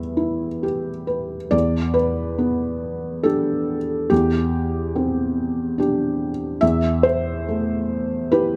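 Rubato and loosely pulsed in 3/4 at around 71 BPM, this melancholic, wistful neoclassical minimalist piano fragment, cut from a longer piece, rests in E minor. A felt-muted upright piano plays alone throughout, ranging from E2 to E5, its soft, intimate tone sitting up front with the mechanical noise of the action clearly audible through close, detailed microphones and light reverb. After an opening Em, the harmony settles at 1.5 seconds into a passage moving through Em7, Csus2/E and Am7/E over an E in the bass.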